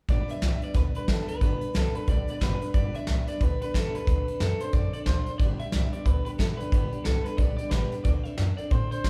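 Rowdy and rollicking, this short rockabilly cut from a longer piece charges along at 181 BPM in G major, with a swung eighth-note feel. A twangy, slightly broken-up electric guitar through a small old amp carries the melody in a fairly high register, its lo-fi tone bathed in spring reverb. Beneath it, a bright, full-bodied steel-string acoustic guitar is picked as accompaniment, while a pizzicato upright bass with gut strings supplies a woody, thumpy low end. A soft brush kit sits up front, with a fat snare, punchy kick and hi-hat driving the swing. The band plays live in one room with a moderate studio reverb, moving through G and D7 changes across the 9 seconds, with the drums and bass louder in the mix than the two guitars.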